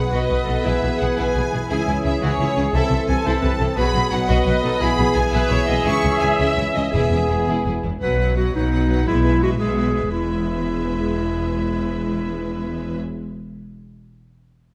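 A lush, intense violin section carries the soaring melody of this heroic adventure film-score excerpt in 6/8 at 114 BPM in E major, with a quieter second violin line and focused, bowed violas filling the middle. Bright trumpet stabs and sustained trombone chords drive the opening until 7.8 s, while timpani strike with hard mallets in the background and a rich cello and double bass section, the basses smooth and up front, anchors the low end. At 8.0 s a solo clarinet enters up front with a second line, all set in a moderate scoring-stage reverb.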